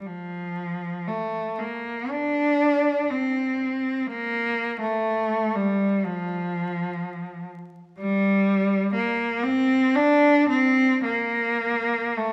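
Vinyl crackle and a recital hall's lingering reverb frame this meditative, lonely classical passage in Bb major, cut from a longer piece, where a single bowed cello plays alone and up front from 0.0 to 12.3 seconds, its rich, focused tone carrying vibrato through a free, rubato pulse of roughly 48-64 BPM in 4/4.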